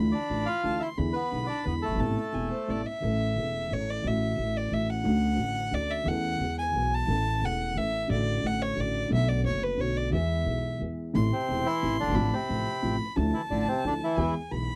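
A sultry, dramatic tango fragment in a rubato three-beat lilt opens with a biting bowed violin, a dark, boxy upright piano and a woody pizzicato upright bass, joined at once by an up-front, reedy bandoneon carrying the melody; the bandoneon falls away as the violin takes a solo from 3.0 s while the harmony shifts, then returns at 11.3 s, all heard in a dry, close 1970s-style studio recording.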